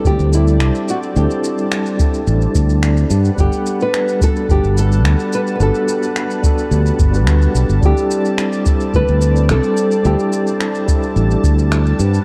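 A straight 4/4 groove at 108 BPM anchors this sunny, smooth sunset chillout excerpt, built on a deep analog-style electronic kick and a soft layer of electronic shaker and finger snaps with a tape-warm, small-room character. A bright, growly fingered electric bass sits up front, carrying the low end between G1 and G2. An overdriven tine electric piano supplies gritty accompaniment through a combo amp, colored by fast tremolo, a low-pass filter sweep and digital delay, while a lush, detuned unison pad holds thick sustained chords with chorus and a slow attack. On top, a small, fingerpicked nylon-string guitar carries the melody between E4 and B4 with delay, until it drops out at 10.6 seconds. The harmony moves from D7sus4 to Gmaj9 at 3.1 seconds and back to D7sus4 at 7.8 seconds, wrapped in a dark production with light reverb and digital ambience.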